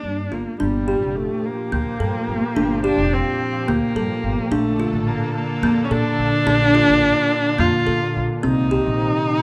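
Contemporary instrumental chamber music in 7/8, pensive and hypnotic, cut from a longer piece and moving from Gm7 through Bbmaj7 to Cm7. An expressive solo viola sits up front as the second line, bowed with vibrato and portamento, while a hollow, thumbnail-plucked kalimba spins short arpeggios and a pizzicato upright bass with woody steel strings holds the low end. From 0.6 s a silky, bright sawtooth string pad with slow attack, vibrato and ensemble chorus sustains chords alongside them, all set in a moderate recital hall reverb.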